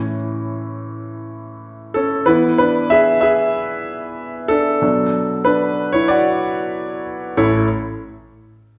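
A solo concert grand piano opens this short pop fragment, sitting up front with an intimate, natural tone, deep bass and audible action noise as it moves through A, E and B minor before returning to A at 7.4 seconds. The mood is warm and hopeful, and the piano rings in the wet reverb of a church or concert hall, its top end gently muted, before it stops at 7.7 seconds.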